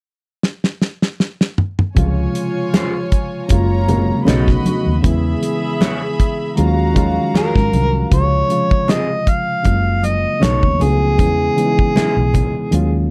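Lush 1970s-style soul in Db major at a slow 78 BPM with a gently swung 16th-note feel, this romantic excerpt is cut from a longer piece. A damped drum kit opens with a fill at 0.4 seconds, its tight kick and medium-tuned snare sitting dry and up front with a rolled-off top. A barky, reedy electric piano, lightly overdriven through its built-in speakers, enters at 1.9 seconds. At 2.0 seconds the band settles onto lush chords like Dbmaj7, Gbmaj9 and Ebm11: a round, dark, foam-muted electric bass; very quiet, ringing congas played with soft hands far back in a large room; and a distant, floating string section bowed sul tasto with a soft attack. A picked electric guitar through a small old amp adds a slightly broken-up, lo-fi riff. From 7.4 seconds an amplified, overdriven harmonica takes the jazz-style solo up front, gritty yet warm, with light vibrato, scooped notes and tongue slaps. The close, dry studio sound carries only light reverb.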